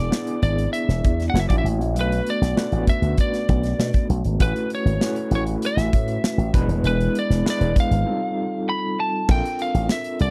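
The recording is dry and close, with little reverb, giving this polished 1980s jazz-funk pop cut an intimate, upfront studio sound. At 98 BPM in a straight 4/4 in A major, the mood is urban and upbeat, moving through chords such as E7, Bm7, A69 and F9 before shifting to Bbmaj9 for a brief new section at 9.3 seconds. A punchy slap bass run through an envelope filter sits up front with a bright, amped tone, alongside a modern acoustic drum kit with a tight kick, medium-tuned snare, hi-hat and crash that has an airy small-room quality. An overdriven tine electric piano supplies barky, gritty accompaniment through a combo amp, colored by medium tremolo and subtle chorus. Over it, a lightly driven, picked lead guitar carries the melody with a twangy, slightly broken-up, compressed tone and a slapback echo, and a break arrives from 8.1 to 9.3 seconds in this passage cut from a longer piece.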